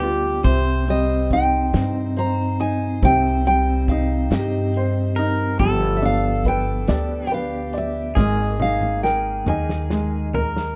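A slow, straight 6/8 sway carries this intimate, heartfelt acoustic folk-pop ballad, cut from a longer piece, with a loose indie drum kit of tight kick and medium-tuned snare sitting under a thumpy, gut-strung pizzicato upright bass, and the drums break into a fill at 8.2 seconds. Up front, a picked steel-string acoustic guitar carries the melody with audible finger squeak, while a twangy pedal steel played with fingerpicks adds a second line of slide and volume swells, a woody vintage upright piano with short sustain provides accompaniment, and a dark, clean electric guitar plays compressed arpeggios through tremolo. The sound is dry and rough, like a home demo.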